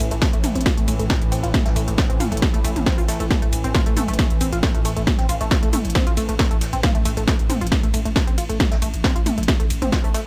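Relentless and dark, this roughly ten-second cut from a longer driving peak-time techno track runs at 136 BPM in A minor over a single Am chord, with a punchy electronic kick entering at 0.2 s, an up-front techno kit of cracking snare, smooth hats, ride, shaker and toms pumping to the sidechain, a very quiet brushed jazz kit with a high-tuned snare, a growling, buzzy 808-style bass on A1 sitting in the background, a deep, moody pad drone with built-in reverb, and a tight detuned sawtooth synth riff coloured by chorus, phaser, overdrive and tape echo, all in a dry mix.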